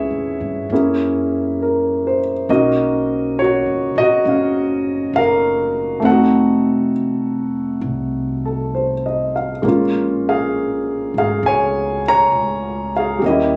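Jazz ballad excerpt with an intimate, romantic mood and a gentle swing, where an up-front grand piano, its action noise audible, carries the chords from Dbm7 through Bmaj9 and F7b9 to Bbm7 over a quieter, woody, growly pizzicato upright bass, all captured on a phone in a club room with light reverb.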